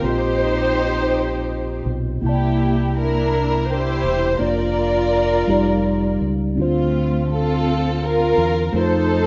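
A lush, woody string section carries the melody from the very start, with a slapback echo and a close, up-front presence. A mellow tine electric piano plays clean accompaniment, and a round, punchy fingered electric bass sits low beneath it. This slow gospel fragment in 6/8 at 55 BPM feels hopeful and jubilant, moving through rich chords from Eb69/Bb to C13 and on to F7, all bathed in a moderate plate reverb with the dull top end of a rough home demo mix.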